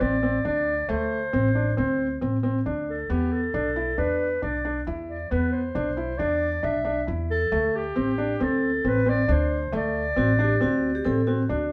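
Heard from further back in a reverberant studio, this short cut from a longer chamber piece feels shimmering and restless in 5/4 at 136 BPM, set in D mixolydian over D5, E5 and D7 chords. A dark, roomy clarinet carries the melody above soft, felt-muted upright piano arpeggios and woody pizzicato upright bass, all three starting together. Near 10.2 seconds a metallic vibraphone with medium hard mallets and slow motor vibrato adds a ringing second line.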